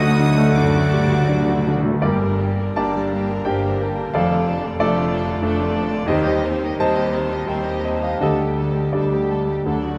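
A timpani fill on D sounds through the opening of this short passage from a Romantic movement for piano and orchestra in G minor, set in a rubato 3/4 at roughly 78-95 BPM with a passionate, brooding mood. The polished concert grand carries the melody up front, its clear tone and deep bass ringing with long sustain, while a very quiet violin section also sings the melody with vibrato and expressive portamento. In the first two seconds the winds and brass add brief colour: flute section, clarinet and oboe on a second line, a mellow French horn section and a barely audible, dark trombone section holding chords, and a dark tuba sounding a low D alongside the round, soft-mallet timpani. After 2.0 s the texture settles into strings and piano, with a second violin section supplying a smooth, even second line, violas giving very quiet accompaniment, and lush cellos and double basses anchoring the bass in the background. 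The harmony moves from D through Gm, Dm/F and Cm/Eb to Dsus4, all bathed in the reverb of a recital hall.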